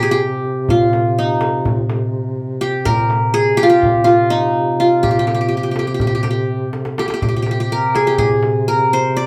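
This Turkish makam ensemble piece in C makam nihavent, tuned to A4 = 438 Hz, moves in a straight 9/8 at 248 BPM counted in eighths, with a longing, melancholic mood in a passage cut from a longer piece. Up front, a bright, plectrum-plucked qanun with triple strings carries the melody between Eb4 and D5, while a mellow duduk holds a folk-style drone on C3, colored by vibrato and scooped notes. A clay-shell darbuka with natural skin enters at 0.5 s, played with soft hands and given a compressed, saturated sound, adding a fill from 6.7 to 7.2 s; the whole ensemble sits in a small, wet room, heard from further back.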